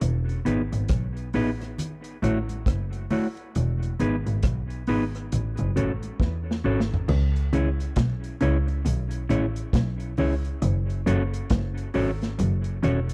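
Swung sixteenths at a relaxed 68 BPM in 4/4 drive this uplifting roots reggae passage, cut from a longer piece. A rich bowed double bass with vibrato and tube saturation sits up front beside a vintage acoustic drum kit with a tight kick and dark cymbals, which rolls into a fill at 6.2 seconds. Very quiet bright congas sit underneath. A clean, fingered electric guitar enters at 0.5 seconds with spring reverb and dub echo over Emaj7 and A6. A second guitar adds a low riff in the background from 7.1 seconds as the harmony moves to C#m and F#m. The whole is captured as a dry, close 1970s-style studio recording.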